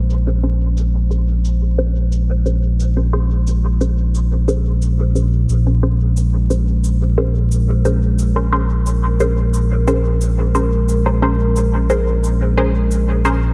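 An echo-heavy mix steeped in vinyl crackle and a moderate echo-chamber reverb frames this hazy, spacious ambient dub excerpt in Bb minor at 89 BPM, resting on a single Bbm9 chord. A warbling, nostalgic, lo-fi pad holds dark, chorused chords under a filter sweep, while a round sine sub bass sits up front on Bb1 and a quiet, overdriven electronic shaker enters at 0.1 seconds. Muted, detuned chord stabs with a bright filter pluck, phaser and dub echo come in at 0.3 seconds, also shaped by a filter sweep.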